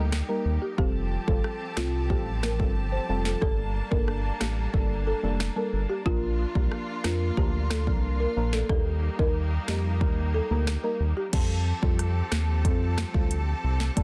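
Dancehall at 91 BPM with a bouncy, sultry feel, this excerpt pairs a deep, up-front sawtooth-and-sine bass and an electronic drum kit with a sharp snare and metallic hats against soft, chorused chord stabs and lush bowed strings with sidechain pumping, while a dry, woody marimba carries the melody through a digital delay from 0.3 to 11.3 seconds over chords moving from Eb through Fadd9, Gmadd9 and Bb, all in a dense, heavily limited modern master.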